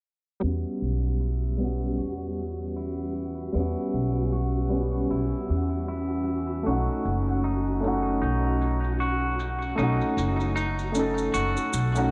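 Echo-heavy and muffled by a low-pass filter in a small room, this brooding, melancholic trip hop excerpt sets a soft felt-muted upright piano, roughened by 12-bit sampler grit and tape echo, over a woody, growly pizzicato upright bass, with clean picked arpeggios from a semi-hollow electric guitar, a dark warbling tape-like pad sustaining chords from 1.0 s, a very quiet flickering grainy texture from 1.3 s, and maracas with dub echo joining at 6.7 s, while filter sweeps run across the piano, pad and guitar.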